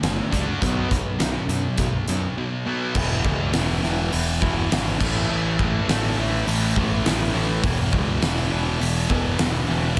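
Anthemic and bittersweet, this short cut from a longer quiet-loud alternative rock piece moves in a straight 4/4. A thick fuzz guitar carries the riff, its bright, double-tracked tone pushed up front through distortion and a slapback echo. Beneath it, a growling picked electric bass adds a punchy, overdriven edge from its direct and amped sound. A huge arena drum kit drives the whole ten seconds with a fat snare, punchy kick, crash cymbal and hi-hat, sitting close and forward. The harmony moves from D/F# to B5 before shifting at 3.0 seconds into a second section built on E5 and A5 power chords, returning to E5 at 7.6 seconds. A lush hall reverb with a touch of small room ambience gives the mix a big arena scale.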